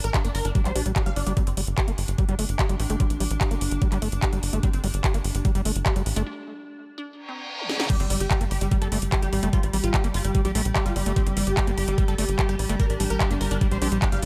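A knocking, tape-warm electronic kick sits up front throughout this hypnotic psychedelic trance excerpt in G minor, pushing a straight 4/4 at 147 BPM with a slightly low tuning reference of A4 = 435 Hz. Beneath it, a tight, dark sequencer bass built from sawtooth, square and triangle tones drives steadily, while a squelchy, gritty acid bass riff runs through distortion, delay and sidechain pumping, joined by a techno kit of cracking snare, metallic hats, handclaps and crash cymbal in a small room. From 1.4 seconds a juicy blip pluck flickers in the background through phaser, subtle chorus, high-pass filter and digital delay, and an evolving, morphing wavetable pad holds sustained chords with chorus, tremolo and its own reverb. A break begins at 6.3 seconds, with a reverse cymbal from 7.2 seconds leading into a drum fill and the drop at 7.9 seconds, where a zap and impact hit. There the punchy, detuned supersaw stab returns as the melody, pumping through phaser and delay over the full groove, all set in a light reverb.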